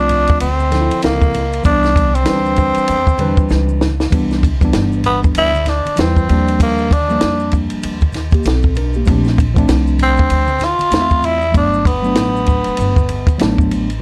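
A raspy, breathy tenor saxophone growls a smooth jazz-hop melody up front over a worn, slightly out-of-tune electric piano playing major-ninth chords, woody pizzicato upright bass, a dry cocktail drum kit with dark cymbals and a high-tuned snare that plays a fill at 3.5 seconds, and very quiet congas and maracas, all in a warm, lightly reverberant excerpt from a longer piece.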